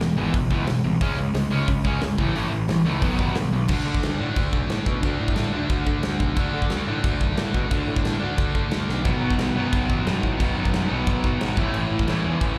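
This excerpt sounds like a live club gig heard through the venue's PA, with only a faint touch of room reverb. It's rowdy, upbeat punk rock at 179 BPM in a straight 4/4. An up-front, compressed, distorted electric guitar drives the riff throughout, while a crunchy overdriven guitar with slapback echo sits further back, drops out at 3.7 seconds and returns at 9.0 seconds. Underneath, a growly fuzz-drenched picked electric bass pushes the low end, and a big acoustic rock kit, with punchy kick, medium-tuned snare, bright crash and hi-hat, throws in a fill at 8.9 seconds. The harmony runs through E, C#5, A and B before settling on D5, then moves back to B and A near the close.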